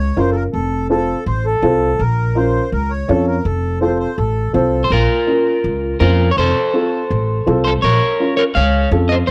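A straight 4/4 pulse at 165 BPM drives this danceable Latin excerpt in Bb harmonic minor, where a growly, woody pizzicato upright bass and a dark, mellow, boxy upright piano carry the Bbm and F changes, a reedy, airy accordion with slow beating holds the second line until 4.9 seconds, and a slightly broken-up, picked electric guitar with spring reverb takes the melody from 4.8 seconds, all captured in a dry, close 1970s-style studio sound.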